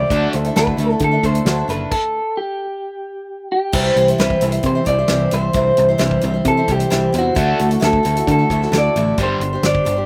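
A slightly broken-up electric guitar carries the melody up front, alongside a boxy, picked ladder-braced acoustic guitar, a bright, double-tracked overdriven riff guitar in the background, and a growly picked electric bass, with a natural country drum kit of fat snare and punchy kick joining at 0.1 s. This nostalgic, jangly folk and heartland rock fragment moves at 132 BPM in a straight 4/4 in C lydian, and the three guitars carry slapback echo. The band halts for a stop from 1.9 to 3.8 seconds before the section comes around again, all captured with a dry, open-air sound.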